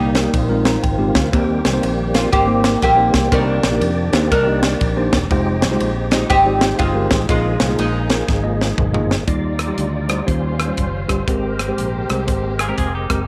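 A woody, bright oud carries the melody over the first 9.1 seconds of this reverent, jubilant uptempo gospel excerpt, its doubled strings given a slapback echo. Underneath, a mellow tine electric piano comps and opens with a short fill, while a percussive tonewheel organ holds sustained chords through a fast rotary speaker and chorus vibrato, key click showing at the attack. A round, fingered electric bass and a crisp, up-front fusion drum kit with a high-tuned snare and tight kick drive a swung 4/4 at 121 BPM in Eb major, and the drums play a fill just before the second section. From 9.3 seconds a studio string section adds smooth, bowed chords with vibrato and portamento in the background, as the harmony lifts from minor ninth colours to Ebmaj9 and Abmaj9. A twangy, compressed clean electric guitar with lush chorus slips in a brief second line at 12.6 seconds, and the whole mix sits in a moderate spring reverb with small-room ambience.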